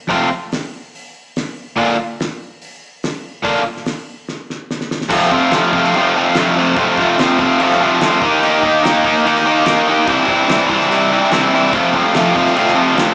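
Garage rock with a swaggering, rowdy mood at 145 BPM in F mixolydian, this cut from a longer piece puts a bright, overdriven, double-tracked semi-hollow guitar riff up front over a cloth-damped, thuddy drum kit with a fat snare, tight kick and dark cymbals, both playing live in one room with a large studio reverb and a small speaker sound, moving from F and Bb to a new section at 5.1 seconds after a drum fill, where the chords run through F, Eb and C before returning to F.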